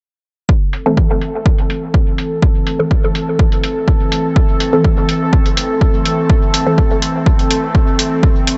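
A punchy, overdriven electronic kick sits up front from 0.5 seconds, joined by a muffled, pitched-down hi-hat in this cavernous, meditative dub techno excerpt at 124 BPM in A minor, holding on a single A minor chord. A muted, nasal dub chord stab with phaser and dub echo lurks in the background alongside an airy, breathy pad whose warbling, detuned chords pump against the kick. A bubbling, resonant texture of random filter steps, treated with chorus and reverb, shimmers behind them all from 1.1 seconds, within a lightly reverberant, dark-topped mix.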